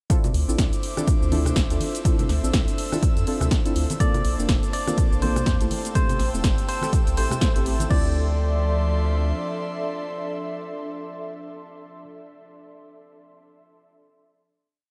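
Deep, mellow chord stabs in close voicing open this smooth, late-night deep house piece at 123 BPM in D minor, their dark, detuned dotted-rhythm chords colored by chorus, sidechain pumping and a diffuse ambient delay. A punchy, tape-warm electronic kick drives a four-on-the-floor pulse up front, joined by an analog drum machine's snare backbeat, closed and open hi-hats, shaker, rim clicks and crash, with soft-handed congas adding syncopation in the background on a 58% swing. A round analog bass plays a sustained, syncopated riff beneath the harmony, which moves from Dm9 through Bbmaj9 and Am7 before settling back on Dm9. Two pads fill out the space: an airy, breathy one holds slow-attack chords with chorus and pumping, while a more ethereal, phased one drifts further back with ensemble chorus and built-in reverb. At 4.0 seconds a bright, barky tine electric piano enters with a repeating riff through a combo amp, and after the drums stop at 8.0 seconds it rings on with the pads and stabs into a final chord from 7.9 seconds, all within a light reverb.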